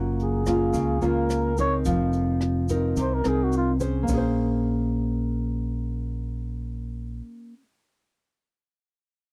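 A breathy, whispered flugelhorn takes an intimate, mellow solo with vibrato up front in this melancholic, wistful bossa nova, cut from a longer piece, stopping at 3.7 seconds over Gbmaj7 and F7sus4 chords. Beneath it, a full-bodied, thumb-plucked nylon-string guitar and a warm fingered electric bass carry on into the Bbm9 passage, while a brushed drum kit with a boomy kick and a grainy, bright egg shaker sit in the background until 4.2 seconds. The sound is dry and close, like a 1970s studio recording.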